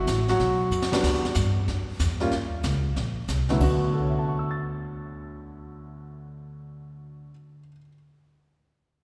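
Relaxed and swinging, this short excerpt cut from a longer jazz piano trio piece moves at a brisk 187 BPM in 4/4 with a lilting swung feel, centered in D major. The baby grand piano carries the melody up front, its intimate, natural tone marked by short sustain and audible action noise as it ranges from low D2 up to A6 across the full 7.9 seconds. Pizzicato upright bass supports it with a woody, warm sound and steel strings, staying low between A1 and G2 until 7.3 seconds. Brushes on the drum kit bring an airy, polished texture, with dark cymbals, a high-tuned snare and a boomy kick, and a drum fill at 0.7 seconds before the kit drops out at 3.9 seconds. The harmony passes through chords such as Em7 and Eb5, all bathed in the long, wet reverb of a church or concert hall.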